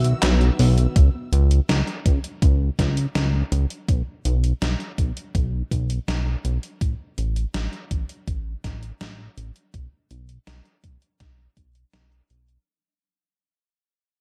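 A glossy, chorused synth bass sits up front through the whole 12.6-second excerpt, its pulse-wave and sawtooth tone pumping under sidechain compression in this nostalgic, driving synthwave at 82 BPM in straight 4/4. For the first second, over a B chord, a very quiet velvety synth lead carries the melody while a bright, shimmering string machine plays a second line high above. Beneath them sit a silky, detuned analog string pad holding sustained chords and a soft, round pluck playing arpeggios with chorus and tape echo. From 1.0 s the harmony drops away and a thumpy electronic kick joins up front, with a filter sweep moving across the bass as the whole piece fades out. Throughout, a gated 80s digital drum machine supplies handclaps, hi-hat and a gated-reverb snare, tape-tinged and re-recorded in a large room, all set in a dark digital ambience.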